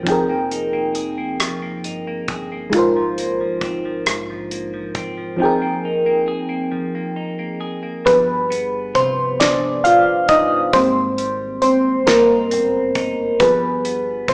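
Heard through a small-speaker sound with a moderate large-studio reverb, this slow six-eight R&B fragment captures a band playing live in one room, its mood yearning and sultry. Up front, a mellow FM electric piano treated with chorus and phaser carries the accompaniment over Fm11 and Ab69 chords, then takes a solo from 8.1 seconds as the harmony moves through G7b9 and Abmaj7, while a clean, compressed semi-hollow guitar plays a picked second line. A damped, dry 70s kit with a fat snare and tight kick anchors the groove, and a dark, round fingered dub bass sits deep in the background.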